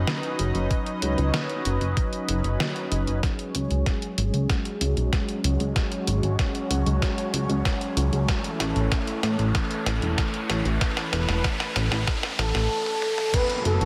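A lush, thick unison pad of detuned sawtooth and square waves carries this moody, cinematic synthwave excerpt at 95 BPM, its slow-attack chords breathing with chorus and sidechain pumping and a filter sweep running from 3.2 to 13.3 seconds, over a glossy, chorused pulse-wave synth bass and a thumpy, tape-warm electronic kick that drops out briefly before the long drum fill. A detuned 8-bit digital drum machine supplies high-passed hats, a medium-tuned snare, toms and crash through gated reverb, while a riser and downlifter builds from 4.7 seconds, with the harmony moving from Badd9/F# through C#sus4 and A to F#m. Near the end, at 12.4 seconds, a smooth, expressive portamento lead with vibrato, analog chorus and delay enters, all under a light reverb.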